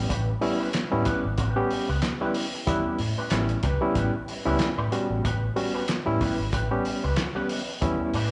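A barky, reedy electric piano opens this energetic, playful funk excerpt at 0.0 seconds, punching out overdriven stabs through its built-in speakers with a fast tremolo and tape echo, sitting up front over a dark, foam-muted fingered bass that is round and punchy. From 0.1 seconds a cloth-damped acoustic kit joins with a fat snare, tight kick, hi-hat and handclaps, its sound muffled, gritty and saturated with a rolled-off top. An electric guitar through an envelope filter adds bright, twangy, compressed picked accompaniment, treated with ensemble chorus and slapback echo and set lower than the other parts. The groove moves at 93 BPM in 4/4 with a light sixteenth-note swing, holding on an A9 chord in A mixolydian. The whole passage comes across as a live gig heard through the venue's PA, with club and small-room reverb and a lo-fi, dulled upper range.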